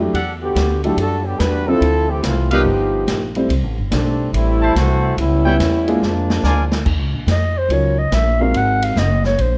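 A dark, lightly reverberant production frames this sultry, dramatic stretch of big band swing at 143 BPM, cut from a longer piece. An intimate upright piano with audible action noise, a pizzicato upright bass up front and a distant, roomy drum kit with a boomy kick carry the swing, while a brilliant, tight trombone section solos over warm trumpet-section stabs with light vibrato, leading into a drum fill at 6.0 seconds. At 7.3 seconds a raspy, growling clarinet takes the solo, its scooped notes carrying a gritty vintage edge.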